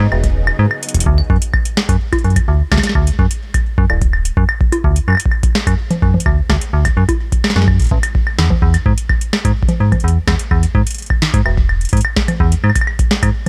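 A wistful, intricate IDM piece in D lydian at 127 BPM opens on a silky, mellow string machine holding an Emaj9 chord with ensemble chorus and vintage 12-bit sampler grit, alongside an up-front FM bass with a fast attack and decaying notes. After a drum fill at 0.8 s, the string machine falls away at 1.1 s, leaving the FM bass with the booming, overdriven analog drum machine (crisp snare, metallic hats, congas and claves) and a deep electronic kick as the harmony shifts from D to E at 8.4 s. The mix is dry and close, with both drum parts re-recorded in a small room.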